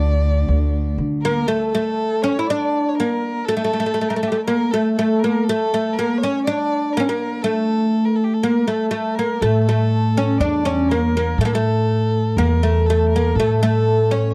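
A bright, woody oud leads this hypnotic, soulful Arabic maqam ensemble piece in A maqam hijaz, its plectrum-plucked double strings sitting deep and up front across the whole 14.3-second excerpt cut from a longer piece. Moving at 121 BPM in a straight 4/4, the oud carries the melody between A3 and E4 while a single bowed violin traces a warm second line above it, expressive with vibrato, portamento and a soft attack. An upright bass with thumpy gut strings plays pizzicato, dark and up front, sounding at the very start, dropping out at 1.4 seconds and returning at 9.4 seconds. A warm bowed cello with vibrato holds a smooth, even drone on D2 in the background only through the opening 1.5 seconds. The sound is dry and close, with little reverb, in the manner of a 1970s studio recording.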